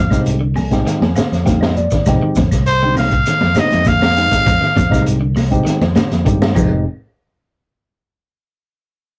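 A growling, raspy trumpet opens this driving, intense afrobeat cut from a longer piece, taking a brilliant, up-front solo with light vibrato in F dorian at 100 BPM. Beneath it, a fingered electric bass lays down a round, dark low end over a single Fm7 chord, while a picked electric guitar at the edge of break-up plays arpeggios in the background. A worn, slightly out-of-tune tine electric piano, lightly overdriven through a combo amp, fills in the accompaniment and adds a short fill early on. A crunchy, saturated breakbeat kit sits up front with a tight kick, high-tuned snare and dark cymbals, joined by grainy shekere, very quiet woody claves and bright, damped congas that enter at 0.6 seconds. The trumpet drops out at 5.0 seconds, and a drum fill arrives at 6.0 seconds before the chord gives way. The whole thing has the rough, gritty feel of a rehearsal-room recording, with warm saturation and a short, wet booth ambience.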